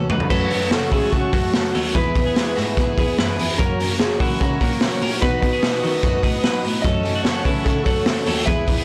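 A straight four-beat pulse opens on a brief drum fill from a raw, punchy, gritty garage kit placed up front, arriving with the guitars and cello in a nostalgic, youthful jangly indie pop cut-off where a slightly broken-up lo-fi electric guitar with slapback echo carries the melody over shimmering, boxy picked twelve-string acoustic accompaniment, twangy, clean twelve-string electric arpeggios and a smooth bowed cello bass. Just after the fill, a very quiet reedy electric piano and a soft, intimate string section holding sustained chords in the background join in, all within a blown-out, overdriven recording with light reverb.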